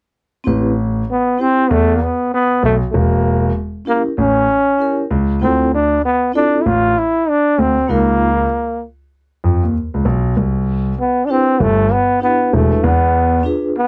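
A breathy trombone carries the melody in a jazz style, entering at 1.1 s with a soft attack, scooped notes, light vibrato and a clear, up-front vintage tone. This is a smoky, nocturnal jazz-hop excerpt in A minor at 97 BPM, with a swung 16th-note feel in 4/4. Underneath, a dark grand piano holds down the bass line in its low register, mellow and intimate, with audible action noise. A vibraphone played with soft mallets fills in the accompaniment with a metallic, ringing sound, a medium motor vibrato and a close-miked, dry presence. The harmony moves through rich jazz chords such as Am9, Dm9, C#13 and Cmaj9 before landing on E7b9 at 12.8 s, all set in light reverb with a dark, warm production.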